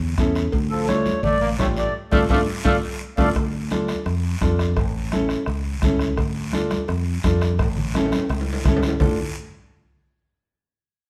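This cumbia has a driving, fiery mood at 170 BPM in a straight 4/4, set in D harmonic minor and shifting between A and Dm chords. A round, direct fingered electric bass sits up front from the start. A woody upright piano joins it, along with a soft-beater bombo, bright hard-hand congas, ringing metal-shell cowbell and timbales, and a raspy guiro, with the congas and the cowbell and timbales placed in the background. From 0.7 s to 3.3 s a reedy, mellow accordion with slow beating carries the melody up front, while a brilliant, punchy trombone with vibrato plays a second line behind it. A drum fill and a band accent land together at 1.9 s, another fill arrives near the close, and the band plays live in one room with a moderate large studio reverb.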